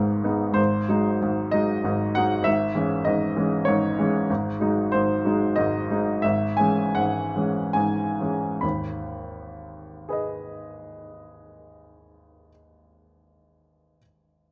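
A clear baby grand piano opens this short fragment of a romantic character piece, alone from the first moment and sitting up front in the sound. The mood is passionate and brooding, in a triple metre shaped by free, elastic rubato. Its tone is natural with a short sustain, heard through close, detailed microphones, while a moderate stone-room reverb adds a sense of space. The harmony sways back and forth between a tense seventh chord and a dark minor chord resting over the same bass note, and the music slows noticeably from 3.4 to 8.6 seconds, where a second section begins. The playing spans from the low bass register up into the upper middle of the keyboard before the fragment is cut off at 14.5 seconds.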